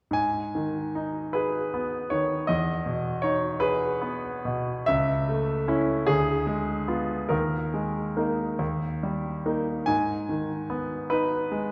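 Bathed in a wet scoring-stage reverb with a 1.7-second decay and heard from further back in the room, this melancholic, yearning romantic nocturne for solo grand piano drifts in rubato 6/8 at 46-55 BPM in G# minor, tuned to A4 = 441 Hz, its brilliant, up-front piano spanning C#2 to G#5 from 0.1 to 11.7 seconds as the harmony moves from G#m through Emaj7, A/C#, Ddim7 and D#sus4 to D# before settling back on G#m in this fragment of a longer piece.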